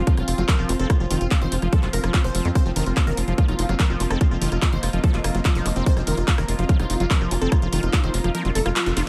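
A punchy, up-front sequencer bass with a tight sawtooth pluck and ring-modulated edge drives this alien, hypnotic psychedelic trance excerpt at 145 BPM, anchored by a tape-warm kick and a techno kit with a cracking, overdriven snare, handclaps, hi-hat and rim click. Above it, a bright detuned supersaw stab carries the melody through phaser and tape echo, while a squelchy, resonant acid bass riff and a bubbling stepped-filter texture with chorus sit in the background, all pumping against the kick, and a faint granular cloud pad hovers high. A metallic FM wobble bass creeps in very quietly at 2.6 seconds, and the kick drops out at 8.3 seconds before a full-band accent at 8.8 seconds in a dry sound.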